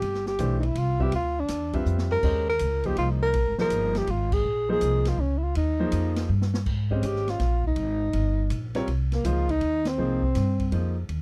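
A swinging 3/4 lilt at 163 BPM drives this searching, hypnotic modal jazz excerpt, where a breathy, whispered tenor saxophone carries the melody up front over woody, thumpy pizzicato upright bass, a baby grand piano comping from 0.4 seconds, and an open acoustic drum kit with dark cymbals and a boomy kick, its fills marking the shift from sus chords to an Abmaj9 in Ab major at 6.7 seconds and band accents landing at 4.3 and 9.8 seconds, all in a dry, close 1970s-style studio sound.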